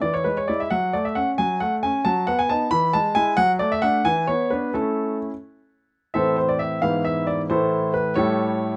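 A clear baby grand piano plays alone from the first moment, with an intimate, up-front sound, audible action noise and long sustain in light reverb. This graceful, playful classical-period sonatina moves in 6/8 at 89 BPM (dotted quarters) with rubato, in A major and tuned to A4 = 436 Hz. After an opening passage that settles on A, the music turns to A minor at 6.1 s and reaches an A7 chord at 8.2 s before this short cut from a longer piece ends.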